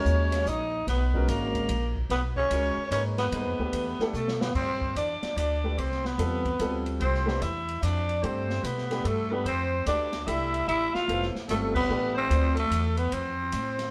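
Searching and hypnotic, this modal jazz excerpt swings in 3/4 at 147 BPM, opening on a Bmaj9 chord and settling into C major from 4.6 s. A growling tenor saxophone carries the melody up front, its raspy subtone full of scooped notes and vibrato. Above it, a breathy alto saxophone sits more distant with a whispered, intimate second line. A warm baby grand piano accompanies until 12.5 s, while a woody pizzicato upright bass with steel strings anchors the low end close at hand. The open jazz drum kit, with dark cymbals and a boomy kick, plays a fill just before the key change, and the band hits an accent at 11.7 s, all captured live in one stone room with moderate reverb as a fragment of a longer piece.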